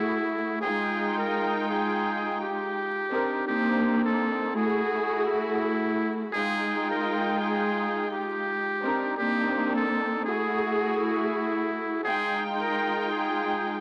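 A buzzy, breathy trumpet with a metal mute carries the melody in a whispered, intimate jazz style, with scooped notes and light vibrato sitting up front across this tough, moody hip hop excerpt at 84 BPM with a swung 16th-note feel. Beneath it, a veiled, con sordino string section bows dark, soft-attack chords through a repeating cycle of Gbm9, Fm9 and Cm9. The dry, gritty recording is dusted with vinyl crackle.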